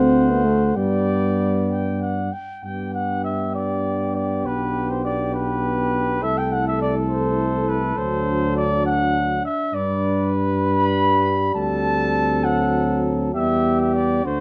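A rubato 6/8 lilt at 67 BPM in dotted quarters sets a stately, triumphant pace for this classical brass quintet fragment in G major, tuned to A4 = 435 Hz, moving from D7 through G and Am/C before settling on Em at 13.3 seconds. An up-front, mellow cornet carries the melody over a clear, close-miked flugelhorn second line with light vibrato and soft attack, while a distant, roomy trombone and a French horn set in the background fill out the accompaniment. A smooth-topped tuba anchors the bass up front with gentle vibrato, all wrapped in light reverb and a dark production.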